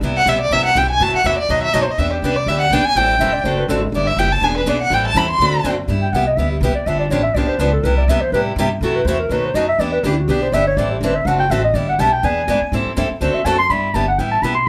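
A swung 4/4 pulse drives this charming, playful acoustic string swing, with a bright, boxy picked steel-string parlour guitar, finger squeaks audible, comping alongside a woody, thumpy pizzicato upright bass on gut strings. A nasal, expressive bowed violin sits up front with the melody, full of vibrato and portamento, until 5.6 seconds, and a soft-attacked, close-miked jazz clarinet, after a brief early appearance, takes the solo from 6.0 seconds. The band plays live together in a small room with wet reverb.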